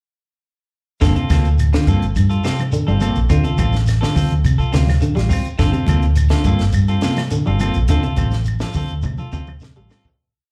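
Hypnotic and intense, this short afrobeat piece in G minor rides a straight 104 BPM groove in 4/4, swaying between Gm11 and Dm7. An up-front, round and dark hollow-body bass plays a syncopated riff under a dry cocktail kit with a high-tuned snare and punchy kick. Over it, a bright, twangy guitar at the edge of break-up repeats an arpeggiated ostinato with ensemble chorus and slapback echo, and a clean guitar adds strummed upper-chord stabs, also with slapback. Grainy shekere sits in the groove. Woody claves tap a five-stroke time line alongside damped, thick-skinned congas, both in the background, echoed and band-limited. The band is captured as a live gig through the venue's PA with club reverb, fading from 7.9 seconds as a drum fill arrives at 9.0 seconds.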